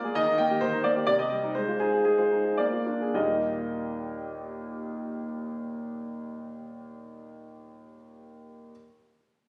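A clear, up-front concert grand piano with deep bass and an open tone plays a playful, elegant classical-period sonatina in Eb major and 3/4, its rubato pulse ranging from 104 to 132 BPM and slowing down over the first 3.2 seconds as Eb, Cm, Fm7/Ab and Bb7 resolve home to Eb before a second section begins, all heard from a phone in a wet recital hall with a 1.7-second reverb tail in this brief cut from a longer piece.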